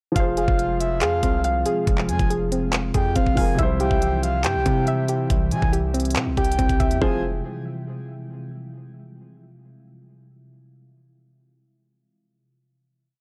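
Trap hip hop at 140 BPM in a half-time feel, menacing and eerie in F harmonic minor, where an up-front electronic kit with a knocking kick, crisp hats and fast hi-hat rolls drives a punchy, saturated 808-style bass whose long sub-bass notes follow the kick with pitch slides, while a soft, round arpeggiated pluck through tape echo and a dark baby grand piano holding spread chords repeat like sampled loops alongside a glassy, ethereal FM pad and a breathy flute-like lead tracing a sparse counter-melody with vibrato, the whole piece captured as a dry, gritty hardware recording that settles onto a final Fm chord at 7.0 seconds.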